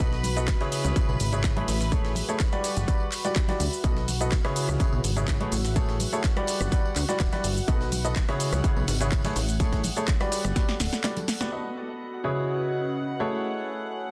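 A bright, worn baby grand piano riff with delay leads this euphoric, uplifting piano house cut at 125 BPM in B mixolydian, pumping over a punchy kick re-recorded in a small room, a house kit of tape-warm hats, claps, rim clicks, shaker and snare, a very quiet gritty breakbeat kit, band-limited vintage tambourine and congas, a funky, tube-saturated analog bass pluck that drops out at 10.9 s, a nasal gut-string chamber section and a warbling, nostalgic chorused pad in the background, until a drum fill at 10.6 s ends the beat and leaves piano, strings and pad moving through B7, C#m7 and Amaj7 from 11.5 s.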